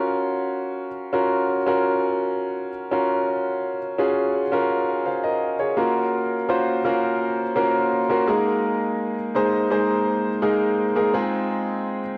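A solo concert grand piano opens this uplifting, nostalgic pop fragment, sounding clear, intimate and up front, with audible action noise, deep bass and long sustain. Cassette tape coloring and tape echo sit on the piano, while a moderate spring reverb lends the home recording a sense of space. The harmony rests on Gbmaj7, a second passage begins at 5.8 seconds, and the chords move to Absus2 at 8.3 seconds and Fm7/Ab at 11.1 seconds.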